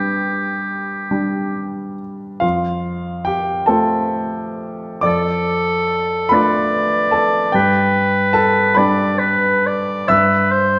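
A moderate recital hall reverb gives this short classical excerpt a roomy, natural glow, with the oboe and baby grand piano both placed up front. It is a romantic duo with a warm, lyrical mood, moving slowly at 42-52 BPM in dotted quarters within a 12/8 metre and shaped by rubato, tuned to A4 = 442 Hz. The oboe carries the melody throughout its 10.8 seconds in a solo, classical style, its tone warm and slightly distant, ranging from G4 to D5. Beneath it, the piano plays the accompaniment across a span from F2 to E6, its sound clear, present and polished. The harmony moves from G through F and Dm/F, returning to G at 7.5 seconds before settling on Em/G, and the passage is cut from a longer piece.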